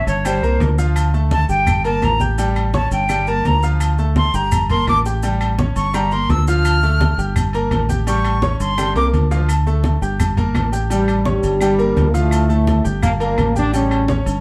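Heard from further back in a moderately reverberant studio, this fiery, passionate salsa excerpt in D minor at 169 BPM opens with an airy, vibrato-laden silver concert flute solo over a brilliant baby grand piano, round and punchy fingered electric bass, low-tuned congas, ringing agogo bells and timbales, grainy maracas and woody claves, until a drum fill at 8.8 seconds leads to a clear trombone section that takes up the melody from 10.9 seconds.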